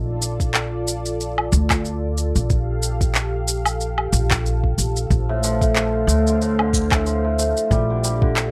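A mellow, hammered cimbalom stands out in this delicate folktronica excerpt, arriving at 5.3 seconds with shimmering, ringing arpeggios carried on a delay. Beneath it, an up-front upright bass plays pizzicato with a woody, dark tone from steel strings. A tape-warm electronic kit sets the swung 4/4 groove: a soft kick and up-front electronic shaker, handclaps and woodblock, entering within the first half second. Behind them, a detuned sawtooth analog pad holds smooth sustained chords with a slow attack, long release, moving notch, chorus, vintage 12-bit sampler grit and plate reverb. The harmony moves from Bbmaj7 through Gm7/Bb and Dm7/Bb to a rootless Ebmaj7/Bb, and a light reverb gives the recording a gentle sense of space.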